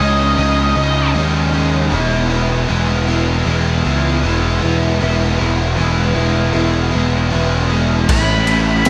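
Wistful and hazy, this short excerpt of shoegaze-leaning dream pop rock moves at a slow 78 BPM in 4/4 with a straight feel, set in E major. A biting, double-tracked overdriven guitar carries the riff from start to finish, sitting up front with a subtle chorus shimmer, while a bright fuzz-laden picked bass holds the low end with overdrive. An octave-fuzz lead guitar plays brief melodic phrases high in its range, heard at the very start and again from 8.1 seconds, its distorted tone trailed by analog delay. At 8.1 seconds a raw garage drum kit enters, its punchy kick, high-tuned snare, ride and crash sounding gritty and saturated in a small, pumping room with a rolled-off top. The harmony drifts from C#sus2 to E and then to A, and the whole mix is soaked in a cathedral-like reverb with a 5.5-second tail, giving it a dreamy, washed-out glow.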